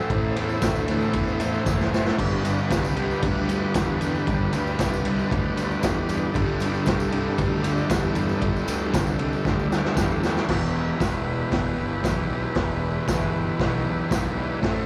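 A double-tracked fuzz guitar riff sits up front in this gritty, menacing garage rock excerpt at 116 BPM in E minor, joined by a saturated drum kit with a boomy kick and a rolled-off top that carries the coloring of cassette tape. Underneath, an overdriven, punchy fingered bass stays in the background, a reedy vintage combo organ holds sustained chords with heavy vibrato, and a jingly tambourine adds bright sparkle from the back of a small room. Drum fills at 1.7 and 9.5 seconds lead into the chord changes, moving from A minor to G and settling on E minor at 10.5 seconds.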